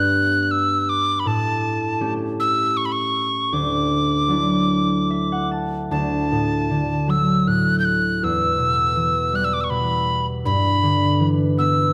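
A breathy tin whistle carries the melody up front, its metal tone marked by a crisp, chiffy attack and vibrato, in this wistful, pastoral Celtic slow air in three, played with a free, rubato feel. A concert harp accompanies throughout with fingerpicked, ringing strings over a broad range, adding a brief fill from 4.7 to 5.9 seconds before the opening phrase returns. Both instruments sit in a moderate concert hall reverb, and the passage is cut from a longer piece.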